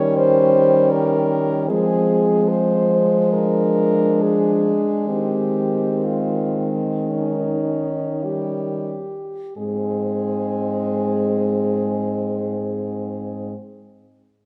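Four French horns sound together from the opening moment in this tender, serene classical passage for horn quartet, cut from a longer piece and set in Ab major in 4/4. The lead horn carries the lyrical melody up front with a warm tone and a smooth top, while a second horn sings a mellow inner line from the background. Beneath them, a close-miked horn holds the accompaniment, and the bass horn has a light vibrato and soft attack, though it sounds distant and roomy. The rubato tempo moves between 42 and 81 BPM, slowing down from 0.2 to 9.6 seconds as the harmony passes through Eb7, Fm and Ab/Eb before settling on Ab at 9.6 seconds. A moderate recital hall reverb surrounds the quartet, and all four horns play until 13.5 seconds.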